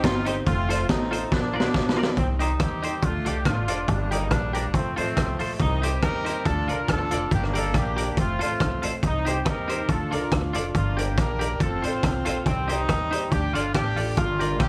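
A small, lightly reverberant room frames this energetic, mischievous ska excerpt in C dorian, moving at 140 BPM with a gentle swing on the eighths. A clear, up-front horn section carries the melody with vibrato and slapback echo. A gritty, saturated garage drum kit with a punchy kick and high-tuned snare drives it beside a woody, thumpy pizzicato upright bass, while a clean, compressed semi-hollow guitar with lush chorus plays accompaniment. A worn, slightly detuned upright piano adds background stabs from 0.3 to 2.1 seconds and again from 9.3 seconds, as a drum fill at 1.3 seconds leads into a cycling Cm–Dm–Gm–F progression.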